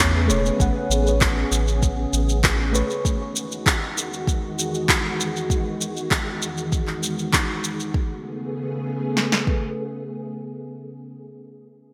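Sunset chillout at 98 BPM in A lydian, this sunny, smooth excerpt drifts from Amaj9 to Emaj9 and back, bathed in a lush hall reverb with a bright 1980s-style digital sheen. A mellow FM electric piano opens the passage with soft, round chords touched by chorus, phaser and delay, alongside a round analog bass with a deep, dark sine-like tone, both falling away after about 3 seconds. A soft string machine holds silky, vintage pad chords with a slow attack, long release and ensemble chorus, carrying on until 11.1 seconds. Up front, an electronic shaker and handclaps ride with gated reverb, joined from 0.6 seconds by a deep house drum kit whose deep kick and punchy snare share that gated treatment and a small-room character. The shaker and claps drop out as a new section begins at 7.9 seconds, and the kit plays on until 9.6 seconds, after which the lingering strings close out the passage.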